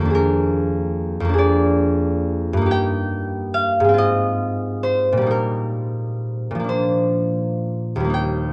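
A solo concert harp sits up front with a ringing, fingerpicked tone, spanning Eb2 to G5 in a peaceful, serene classical passage cut from a longer piece. The playing moves in a slow, rubato 6/8 at about 40-49 dotted-quarter beats per minute, tuned to A4 = 435 Hz, through the chords Bb7/F, Eb/G, Fm7/Ab, Eb/Bb and Bb across its 8.5 seconds. Close, detailed microphones and light reverb capture the harp's warm, ringing sound.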